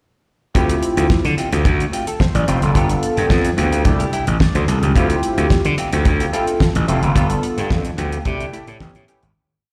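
A chorused polysynth and a semi-hollow electric guitar open at 0.5 s, joined by a gritty slap bass and a damped 70s drum kit at 0.6 s for a funky, late-night early-eighties boogie funk breakdown in D dorian at 109 BPM, with the growly overdriven bass up front over a dry four-on-the-floor beat, glossy rootless push chords from the synth, choppy sixteenth-note hollow-body guitar with lush chorus, and a live-gig sound heard through the venue's PA in recital hall reverb, moving through Dm11, G7 and C6 before a fade-out from 7.2 s that ends on A7.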